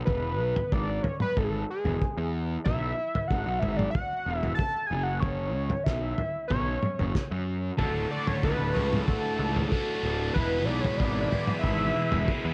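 In a straight 4/4 groove, this kaleidoscopic, trippy slice of psychedelic rock opens with a muffled, cloth-damped drum kit of thudding kick, fat snare and toms, a round, punchy fuzz bass, and a fat sawtooth analog lead that carries the melody with vibrato, filter sweeps, phaser and analog delay over chords moving from E to F#5. At 7.8 s, as the harmony shifts to D, a dark, double-tracked overdriven guitar riff with phaser joins up front, and a buzzy vintage combo organ adds sustained chords in the background. A small room ambience and light reverb frame the mix.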